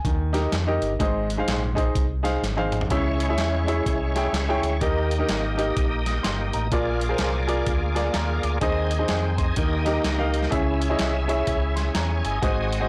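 Uptempo gospel at 126 BPM with a swung 4/4 feel, soulful and jubilant, heard as a short cut from a longer piece. A clear, intimate baby grand piano with audible action noise carries the accompaniment over a dark, round fingered electric bass with transformer saturation and a gritty, compressed boom bap sampler-style kit with a thumpy kick and medium-tuned snare, re-recorded in a large room; after a drum fill at 2.4 seconds, a bright, shouting tonewheel organ enters at 2.9 seconds with sustained chords through a fast rotary speaker, overdrive and chorus vibrato. The whole recording is blown-out and overdriven, with light reverb and digital ambience, moving through chords such as Eb, Ab, Dbm and Bb7.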